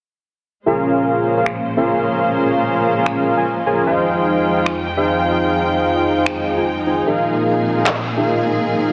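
A soft, detuned supersaw riff sits up front in this lush, emotional future bass piece, its smooth sawtooth tone low-pass filtered and trailed by dub echo as the harmony moves from Bbm7 to Fm7 to Bb7sus4. Beneath it, a muted string section holds dark, veiled chords played con sordino with vibrato, while layered, overdriven electronic finger snaps and handclaps enter at 1.5 s under a filter sweep, riding a half-time, lightly swung groove. A moderate hall reverb and a dense, heavily limited master give the cut a polished, modern sheen.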